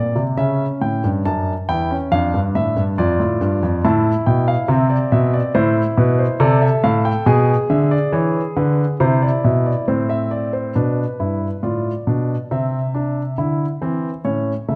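Solemn and contemplative, this is a baroque-style three-part fugue for solo grand piano, taken from a longer piece and moving at a steady 69 BPM in straight 4/4. The piano sounds warm and up front, with long sustain, and it covers a range from E2 to A5 across its 14.8 seconds. The opening section dwells in minor, passing through C#dim, Dm/F and Am before G#dim/B leads back to Am. At 10.7 seconds a new section turns brighter, moving from G7 to C and arriving on an A chord at 14.2 seconds. Close, detailed microphones capture the instrument clearly, while a moderate recital hall reverb lends a sense of space around the contrapuntal lines.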